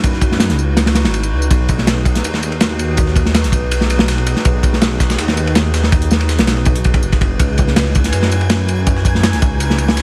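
Crunchy, saturated breakbeats from an up-front acoustic kit with a tight kick, dark ride and snare drive this raw, nostalgic drum and bass excerpt, joined by a gritty, compressed, sampler-style kit of high-passed hi-hat, snare and tambourine, a deep, rumbling detuned saw bass, a mellow, warbling lo-fi pad holding C#m11 and G#m7/B chords through chorus and reverb, and a twinkling granular shimmer that surfaces in the background at 8.0 s, over a bed of vinyl crackle.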